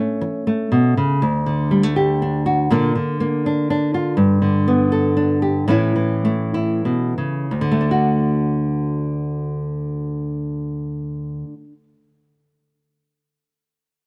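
A dry, close recording with a 1970s studio character and light reverb frames this gentle folk excerpt in D major, where a solo nylon-string guitar, fingerpicked in a warm classical style and placed up front, plays a rubato passage in 3/4 between 87 and 123 BPM, moving from A to D, Bb, G and back through A to D, and slowing down from 4.2 to 7.5 seconds.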